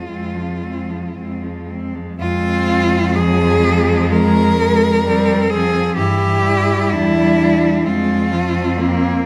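A reverberant recital hall surrounds this brief, serene passage for cello ensemble, cut from a longer piece and played in an unhurried 4/4 with a free, rubato feel. Four bowed cellos, each a single player with vibrato, share the texture. The lead cello carries the lyrical melody in a rich, focused, close tone that sits up front, while a second cello traces a softer inner line with a smooth top. A warm accompanying cello shapes its phrases with soft attacks and expressive portamento, and the bass cello anchors everything from below with a clear, forward sound. The harmony rests on F minor, shifts to E minor seventh at 6.0 seconds, and settles back on F minor at 7.8 seconds.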